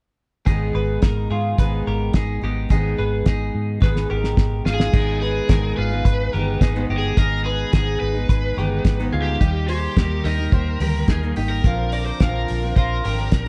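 A cloth-damped drum kit sits up front in this breezy, youthful indie pop excerpt at 107 BPM, its thuddy fat snare, tight kick and dark cymbals driving a straight 4/4 pulse and rolling through a fill at 3.8 seconds. Beneath it, a foam-muted vintage bass adds round, punchy low end, while a full-bodied jumbo acoustic guitar fingerpicks accompaniment and a bright, twangy twelve-string electric spins clean arpeggios through spring reverb over chords moving from Abm to Eb and Bbadd9. At 4.7 seconds a picked lead guitar pushed through a small cranked amp enters with an overdriven melody, all set in a light reverb.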